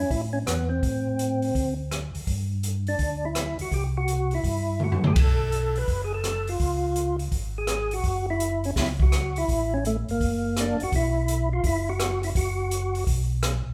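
Captured live in one room with a moderate large studio reverb, this short, bluesy and soulful soul jazz organ trio excerpt swings at 166 BPM in 4/4 in F# minor. A fat, lightly overdriven tonewheel organ carries the melody up front, its key click and third harmonic percussion colored by chorus vibrato and a slow rotary speaker, while a round, mellow, clean second organ with the same vibrato and slow rotary plays the bass line. An acoustic drum kit with dark cymbals, a high-tuned snare and a boomy kick sits up front and plays a fill at 4.8 seconds, as the harmony moves from F#m7 to a Bsus4 at 10.9 seconds.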